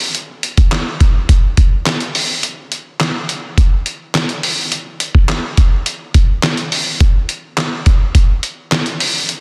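Pop with a driving, bittersweet mood, carried entirely by a trip hop sampler-style drum kit that sits up front from 0.1 seconds, its handclaps, hi-hat, thumpy kick and medium-tuned snare sounding compressed, gritty and pitched down. A break arrives between 2.4 and 3.6 seconds in this short cut from a longer piece. Light reverb surrounds the kit, and the master is dense and heavily limited in a modern way.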